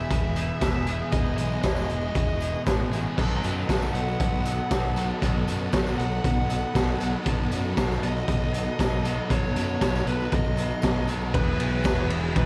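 Opening on an Emaj7 chord, a distorted fuzz lead guitar with tape echo carries the melody over very quiet vintage sawtooth string-machine violas, a shimmering octave-doubled twelve-string acoustic picking arpeggios, double-tracked biting overdriven guitar and thick fuzz guitar riffs, a twangy clean electric riff bathed in reverse reverb and a bright fuzz bass, while a raw, gritty garage drum kit with a boomy kick and high-tuned snare joins up front at 0.1 seconds and a jingly tambourine enters at 0.4 seconds in this blissful, hazy 118 BPM shoegaze and dream pop excerpt in E major, which moves to B7 and lands on Eadd9 at 11.3 seconds, all heard through the haze of cassette tape and a small room.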